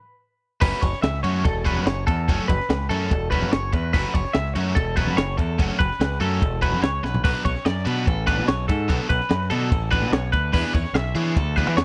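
A dry, close 1970s-style studio sound frames this intricate, playful math rock and midwest emo excerpt at 145 BPM in straight 4/4, where after a brief stop a bright, twangy twelve-string electric guitar with spring reverb and slapback echo spins arpeggios up front over a double-tracked overdriven stack guitar riff, a growling overdriven picked bass, and a compact cocktail drum kit with a high-tuned snare, punchy kick and dark, rolled-off cymbals, moving through F#m7, Bm7 and E7sus4 with a drum fill at 7.0 seconds.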